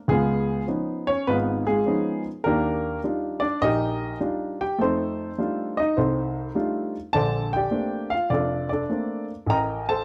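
A close, intimate sound with light reverb puts a dark baby grand piano up front, its mechanical action audible beneath the notes and its short sustain giving each chord a natural decay. This brief solo jazz passage, cut from a longer piece, moves at 102 BPM in 4/4 with a swung eighth-note feel and a swinging, warm mood. Centred on Bb major, the piano spans from F1 up to Bb5, drawing a mellow tone from the instrument across that range. The harmony begins on Db9 and travels through Ebmaj9 and F13 to a Bbmaj9 at 7.1 seconds, then turns to Am7b5 at 9.5 seconds. The piano plays alone from the first moment to the close at 10.0 seconds, carrying the whole performance by itself.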